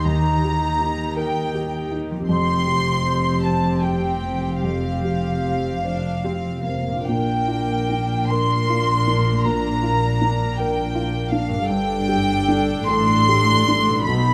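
A mellow, hollow small flute group joins a soft-edged violin section carrying the melody and a darker second violin line in this hopeful, moving cinematic passage in a rubato 6/8 at about 48-55 BPM, where a floating viola section, a natural-toned baby grand piano, a quiet ringing harp playing arpeggios, and a bass of warm cellos and dusky double basses all sit in a scoring-stage reverb over 14.3 seconds cut from a longer piece.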